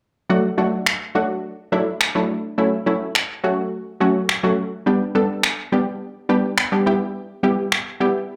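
Carefree and euphoric, this dance-pop excerpt is carried by an up-front chord stab from 0.3 seconds: a punchy, bright, detuned sawtooth sound with a wave-folded, filter-plucked edge, dressed in chorus, plate reverb and slapback echo as it moves through D, A6, G and Em. Layered, tape-warm electronic finger snaps join at 0.9 seconds, also up front and carrying their own slapback echo. The whole thing is heard as a live gig through the venue's PA, wrapped in moderate club reverb.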